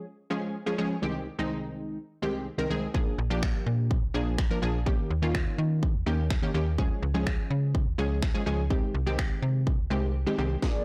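A blown-out, overdriven mix with light reverb carries this carefree, euphoric dance-pop excerpt in Ab major at 125 BPM, where bright, detuned sawtooth-and-square chord stabs with a filter pluck, chorus and sidechain pumping open over Db, Abmaj7/C, Bb7 and Eb7 changes, a house drum kit with a punchy kick, cracking soft-clipped snare and finger snaps arrives at 2.9 seconds, followed at 3.2 seconds by a snappy, metallic slap-like FM bass that also pumps, and after a silent gap and a drum fill a shimmering, mellow pulse-width pad with ring modulation and a moving notch surfaces at 10.6 seconds.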